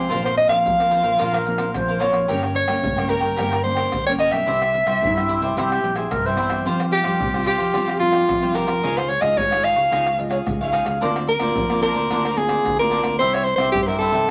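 This lively, yearning excerpt of samba and choro opens with a bright, close-miked soprano saxophone carrying the jazz-style melody with vibrato, placed up front over crisp picked cavaquinho, classical fingerpicked nylon-string guitar and a direct, fingered electric bass. Hard-handed pandeiro, tamborim, tube shaker and a deep surdo join almost at once, sounding close and dry beneath the strings. At 1.2 seconds an airy wooden baroque flute enters as an expressive second line with soft attack and its own vibrato, sitting up front alongside the saxophone before dropping out and returning briefly at 10.2 seconds. The harmony moves through colored chords such as Bbsus2, Gdim, Dbadd9 and Bbadd9/D, giving the straight 4/4 feel a wistful tint. A wet small-room reverb and a layer of vinyl crackle lend the recording an intimate, aged character.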